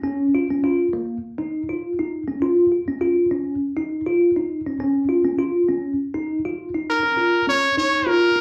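Hypnotic and defiant, this afrobeat fragment moves at 101 BPM in Bb minor with a lightly swung sixteenth feel, cut from a longer piece. A bell-like tine electric piano, clean and direct, sits up front, spinning arpeggios through phaser, plate reverb and slapback echo from the start until 8.4 seconds. At 6.9 seconds a brilliant pop-style trumpet solo enters up front with scooped notes, heard as a live gig through the venue's PA, bathed in a club reverb.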